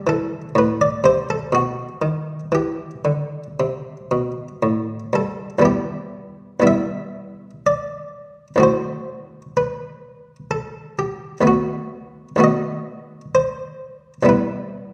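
This classical, baroque-style suite movement for solo harpsichord in E minor is cut from a longer piece and moves at a slow 57-66 BPM in 3/4, with a rubato, dance-like lilt and a radiant mood. The buff-stop harpsichord plays alone throughout, from D#2 up to E5, and its Flemish-style tone is muted, plucked and lute-like, sitting mid-forward and up front. That dry close-up voice rings out into a wet recital hall reverb with a 1.6-second decay, giving the sense of a church or concert hall. After an opening phrase that moves through Amadd9 and B to settle on E minor, a second section begins at 5.6 seconds, shading toward F#m7b5 over E and B7 over D# before returning home to E minor at 14.3 seconds. The instrument is tuned slightly low, to A4 = 438 Hz.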